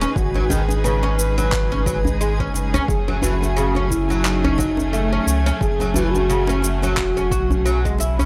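A round, deep sub bass sits up front in this meditative, earthy organic downtempo excerpt at 88 BPM in F# dorian, under a breathy, flute-like synth lead with tremolo, chorus and delay that carries the melody from 0.2 seconds, while a bright, woody oud plucks arpeggios through analog delay. A rich, bowed studio string section holds sustained chords that pump against the sidechain, moving from G#m to F#m7 at 2.9 seconds, and a very quiet granular texture twinkles high above. The groove, swung on sixteenths, rests on a layered electronic cabasa and handclaps, a punchy electronic kick in the background and a close, dry djembe struck with hard hands, all within a gritty, dry hardware sound.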